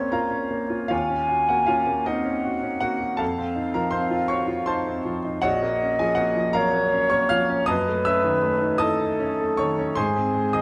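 Up front and intimate, a clear baby grand piano carries the accompaniment across a broad range, its action noise audible, while an airy concert flute sings a straight-toned melody with a soft attack from a more distant place in the room. This solemn, elegiac romantic duo moves in 6/8 with rubato, its harmony passing from the minor home chord through seventh chords and a half-diminished sonority before arriving on a major chord at 10.0 seconds. Close, detailed microphones catch the playing within a moderate recital-hall reverb, and the 10.6-second passage is a fragment cut from a longer piece.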